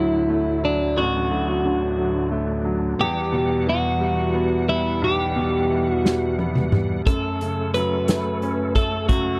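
A twelve-string electric guitar carries the melody from the first moment, its clean, picked, compressed tone shimmering through a vibrato effect and tape echo, while a bright, woody upright piano and a reedy, lightly overdriven tonewheel organ play underneath. This is a swaying, tender pop ballad in 6/8 at 59 BPM, felt in slow dotted-quarter pulses and tuned slightly under standard pitch to A4 = 438 Hz. The organ holds sustained chords through a chorus vibrato and a fast rotary speaker, with audible key click. The harmony moves from Dadd9 to Emadd9 at 3.0 seconds, then settles on F#m at 7.1 seconds. At 6.1 seconds an acoustic drum kit, played with bundle sticks, comes in with a fill across hi-hat, kick, snare and toms, its tight kick and medium-tuned snare sounding up front in a small room. The whole fragment, cut from a longer piece, has a dry, close 1970s-style studio sound with light reverb.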